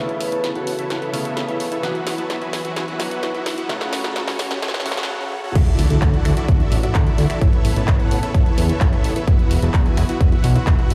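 Heard through a big sound system in a bare stone room with light reverb, this euphoric, anthemic festival progressive house passage opens on a build-up. A thick, detuned supersaw riff under a filter sweep is backed by a clear, polished grand piano with sampler grit and delay, dark, veiled con sordino strings, a brief ringing vibraphone figure, a very quiet riser and impact, and a punchy big-room drum kit with snaps, claps, toms and a crash. At 5.6 s the drop lands, as an overdriven, up-front kick and a fat, nasal, saturated analog bass join, with the supersaw and strings pumping against them until 10.9 s.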